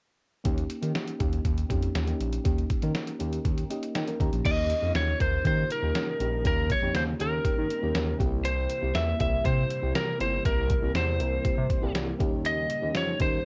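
Nostalgic and uplifting, this 1980s-style pop cut in Eb mixolydian at 120 BPM opens with a mellow, round FM electric piano through chorus and cassette tape, a smooth detuned sawtooth synth bass, and a muffled, pitched-down trip hop sampler-style drum kit with a thumpy kick, before a very quiet, warbling string machine cello pad enters at 4.4 seconds, followed by an up-front, slightly broken-up lead guitar melody at 4.5 seconds, all in a lightly reverberant home cassette sound.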